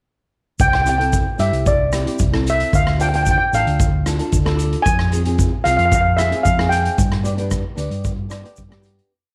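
A straight 4/4 calypso groove from an up-front street-band drum kit, with a boomy kick, hi-hat and rim click, joins a grainy, close tube shaker to set this short, bouncy and sunny piece going at 0.6 seconds. A metallic, shimmering steel pan struck with hard rubber sticks leads with a motif-based melody over a round, punchy hollow-body electric bass playing a syncopated figure. A fingerpicked nylon-string guitar adds double-tracked triad chords with a cassette tape colour through C, Dm, Fm and G, all wrapped in moderate spring reverb and a homespun cassette sound before fading out from 7.0 seconds.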